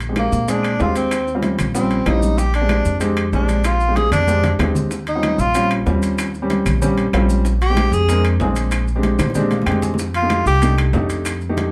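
A pizzicato upright bass with a woody, up-front tone opens this danceable, sophisticated Afro-Cuban jazz fragment at 189 BPM in a straight 4/4. Bright, damped congas sit in the background from the start, alongside grainy maracas and ringing metal-shell timbales. A baby grand piano with a natural, short-sustain sound plays accompaniment close in the mix, while round, low-tuned bongos and claves add very quiet touches. The breathy tenor saxophone carries the solo, its warm vibrato, soft attack and scooped notes giving it a jazz-style voice. The harmony moves between Bb13 and Eb13 in Bb mixolydian before reaching F13 at 10.0 seconds, with a drum fill at 4.3 seconds and a piano fill from 9.0 seconds. A wet club reverb places the band further back in the room.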